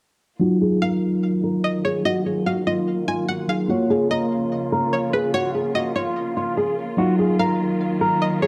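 A fingerpicked nylon-string guitar carries the melody up front with fresh, squeaking strings in this tense, dark half-time hip hop excerpt, over a mellow tine electric piano and a veiled, con sordino string section holding sustained chords, while a twangy resonator pluck with chorus, plate reverb and tape echo adds a second line from 0.8 s, the mix set in a wet room with a cassette-tape character and a filter sweep running throughout.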